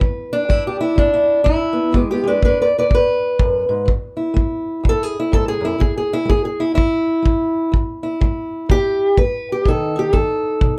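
A swung 4/4 pulse at 124 BPM drives this short excerpt of acoustic country blues in E mixolydian, soulful and gritty in mood and tuned slightly below standard pitch. A fingerpicked steel-string acoustic guitar with old strings carries the melody up front, its woody, boxy parlour tone ranging from E2 to D5. A kick drum sits alongside it, tight yet roomy, with a rolled-off top that suggests a small, distant space even as it stays prominent. From 1.9 seconds the guitar takes a solo over the changes, moving from E to A5, back to E, and landing on B near the close. Light reverb and a dark, warm production give the duo an intimate, weathered character.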